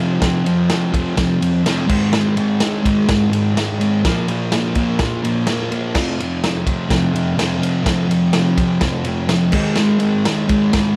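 A dark, double-tracked fuzz guitar drives a raw, swaggering garage rock riff in F minor at 126 BPM, moving through F5, Ab5 and Bb5 power chords over a gritty, saturated breakbeat drum kit with a tight kick, medium-tuned snare and dark crash and ride cymbals, all in a light reverb across this short excerpt cut from a longer piece.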